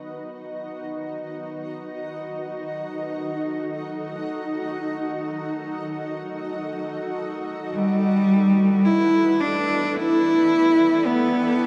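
Free of any steady pulse, this serene ambient excerpt drifts in slow, unmeasured time, opening on a granular cloud pad that fades in from the very start and holds sustained chords through the whole 11.7 seconds. The pad is cloudy and blurred, a full-bodied, detuned sine texture with a slow attack and long release, its grains evolving gently beneath a built-in reverb and a shimmer reverb that keep it sitting softly in the background. At 7.7 seconds a rich cello enters with the melody, a single bowed player whose smooth, even tone carries a lyrical vibrato in its lower-middle register. Placed up front and clearly louder than the pad, the cello also takes on a shimmer reverb that ties it to the surrounding haze. A cathedral-like reverb with a long 5.2-second decay bathes the music, and the dark production lends the whole a calm, enveloping glow as the piece breaks off mid-thought.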